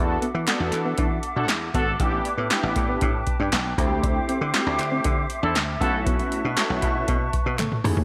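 Bathed in a lush hall reverb with a big arena sound, this danceable early-eighties boogie funk excerpt rides an up-front analog drum machine with a deep kick, punchy snare and metallic hats, a foam-muted thumbed slap bass, round, detuned synth brass accompaniment with chorus, phaser and slapback echo, breathy sustained flute-ensemble chords, a dark, clean guitar riff in the background, very quiet crisp group handclaps, and brief, tight vintage horn-section lines at 1.4 and 5.4 seconds, closing on a drum fill at 7.6 seconds.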